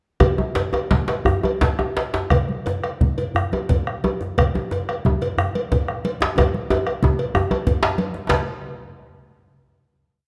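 From 0.2 s, a driving, powerful West African drum ensemble in 12/8 enters together: a metallic cowbell bell pattern, a round, up-front bombo, ringing congas played with soft hands and a background djembe with metal rattles lay evenly spread patterns beneath a tight, cracking lead djembe's phrases, and the short piece speeds up from 113 to 134 BPM through a drum fill at 6.4 s into a final hit at 8.3 s, set in a moderate recital-hall reverb.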